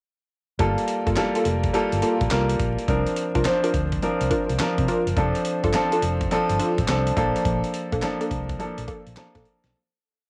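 A home cassette recording in a small, dry booth carries this bouncy, slick new jack swing verse in G minor at 105 BPM, hard-swung on the sixteenths and moving through Gm9, C9sus4, F6 and Bbmaj7 before a fade-out from 7.5 seconds. Up front, a clear, intimate grand piano with audible action noise, long sustain, tape colour and plate reverb plays syncopated drop-2 chord stabs, while a dark, foam-muted, round fingered electric bass bounces through a swung synth-funk line with chromatic approach notes. Underneath sits a gritty, compressed sampler-style drum kit, its thumpy kick and medium-tuned snare layered with handclaps over hi-hat, and from 1.1 seconds a punchy, detuned sawtooth-and-square polysynth adds short syncopated filter-plucked stabs through chorus, tape echo and plate reverb.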